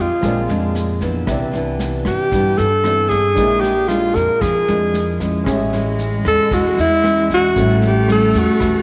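A breathy alto saxophone carries the melody up front in this relaxed, sophisticated bossa nova excerpt at 115 BPM in A major, its subtone, scooped notes and light vibrato trailed by tape echo. A full-bodied, fingerpicked nylon-string guitar with finger squeak and a background grand piano with audible action noise move through Bb9, Cmaj9, Bb7#11 and Amaj7 harmonies. A woody pizzicato upright bass with transformer saturation anchors the low end beneath dark, smooth brush drums and a grainy, bright tube shaker, and at 5.5 seconds a close, sul tasto cello enters with a soft-attack bowed second line, set in a moderate echo chamber reverb.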